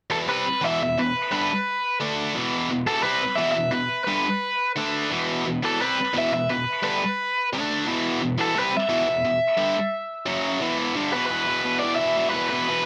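Aggressive and angry, this punk excerpt drives ahead at 174 BPM in a straight 4/4, rooted in E minor and cut from a longer piece. A tight, distorted guitar carries the riff, double-tracked and up front with a bright, picked edge, moving mostly between E minor and D5 with a brief turn to F#5 near 10.3 seconds. Over it, an overdriven electric guitar plays the melody in a higher register, its picked tone bright and forward, trailed by a digital delay. Both guitars run together from 0.1 seconds to the close, with a shift into a new section at 11.1 seconds landing on E5. A moderate small-room reverb gives the pair a close, compact space.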